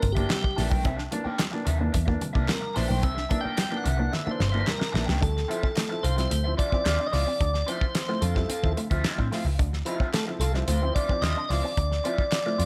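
A piping tonewheel organ with slow rotary speaker and slapback echo leads this strutting, playful funk cut at 110 BPM, soloing over C9 until a drum fill carries it into Dm9 at 5.2 seconds. Up front, a round, foam-muted picked bass and a damped 70s kit with a fat snare and tight kick hold the groove, while dark, woody upright piano stabs sit alongside a twangy envelope-filtered guitar riff with analog chorus in the background. A raw garage guitar adds overdriven wah accompaniment with spring reverb, and very quiet handclaps join alongside thick-skinned congas that drop out at 5.2 seconds.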